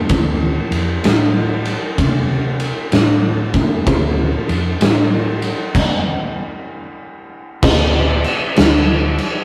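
A swung 4/4 groove at a slow 64 BPM in D minor drives this sludgy, heavy stoner and doom metal excerpt, where an oversized low-tuned drum kit with a fat snare, punchy kick, dark cymbals and gritty saturation sits up front in a bright stone room while a round, hollow-body fingered electric bass with overdrive rumbles between D2 and C3, the rough rehearsal-room recording with light reverb breaking into a stop from 5.7 to 7.6 seconds before a new section begins.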